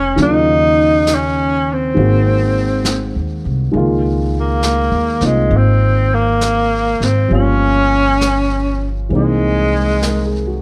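A slow 4/4 swing at 67 BPM carries this intimate, late-night jazz ballad in Db major, cut from a longer piece, with a vintage brush kit joining at 0.2 seconds on brushed snare and hi-hat, its medium-tuned snare sounding natural in a studio room with a rolled-off top. Up front, a breathy tenor saxophone sings the melody in a mellow, whispered subtone, with a soft attack, scooped notes and vibrato, sitting in a low register between Ab3 and Eb4. A warm grand piano supplies the accompaniment beneath it, moving through Ebm9, Ab7 and a lingering Db69 before turning to Gm7b5 at 7.3 seconds and C7alt at 9.1 seconds. The pizzicato upright bass, woody and up front with steel strings, anchors the low end from the start. A light reverb gives the saxophone a roomy glow, keeping the whole 10.6-second passage intimate and close.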